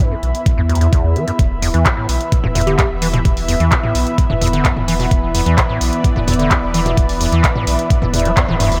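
A straight 4/4 groove at 129 BPM drives this short, trippy acid house excerpt, anchored by a thumpy, sampler-style electronic kick that sits up front with a tape-warm tone and the air of a large room, while a punchy analog drum machine adds handclaps, hi-hat and toms underneath. From the start a deep, rubbery acid bass riff with a resonant filter sweep and dark square-wave bite runs through overdrive, subtle chorus and delay, and a round analog bass joins at 0.2 s, its sine-and-triangle low end thickened by tube saturation and breathing with sidechain pumping. Floating above, an airy, breathy pad with a noise layer and vintage warble fills the upper register with chorus and pumping. At 1.7 s a lush, detuned unison pad enters with bright sustained chords, colored by chorus and phaser. A soft, keys-like FM lead sounds a single brief G4 in the background near 2.7 s through chorus and digital delay, and the band hits an accent at 8.4 s, all wrapped in light reverb.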